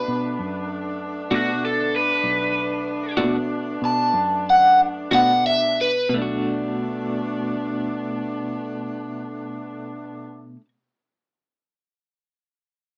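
In a slow, straight 12/8 blues pulse of 59-65 BPM on a Bm7 chord, this smoky, mournful fragment opens with an overdriven, phaser-tinged hollow-body guitar solo up front that slows from 1.0 s until it stops at 6.1 s, over a distant, mellow saxophone section holding tight, vibrato-laden chords, a dark, round, foam-muted fingered bass, and a clean, compressed electric guitar with tremolo that enters at 1.3 s, all set in a small room with a rough home-demo, small-speaker sound.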